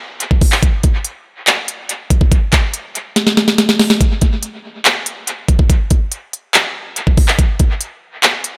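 A half-time hip hop groove in 4/4 comes from an up-front, overdriven electronic trap drum kit, with its knocking kick, sharp snare, crisp hi-hats and handclaps soaked in dub echo, entering at 0.2 seconds, breaking into a fill at 3.2 seconds and playing on to 8.5 seconds in this dreamy, wistful excerpt, set in a light reverb and an echo-heavy mix.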